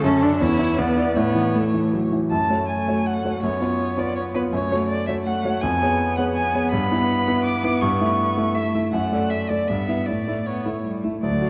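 A graceful, lively classical-period movement in triple time opens with all three members of a piano trio together: a focused, up-front violin with vibrato carries the melody over a smooth, even cello line. The intimate grand piano accompanies with deep bass, short sustain and audible action noise, its polished, present tone sitting a little louder than the strings. A dark, warm production places the trio in a wet concert hall, and the brief excerpt moves into a new section at 2.3 seconds before cutting off near 11.5 seconds.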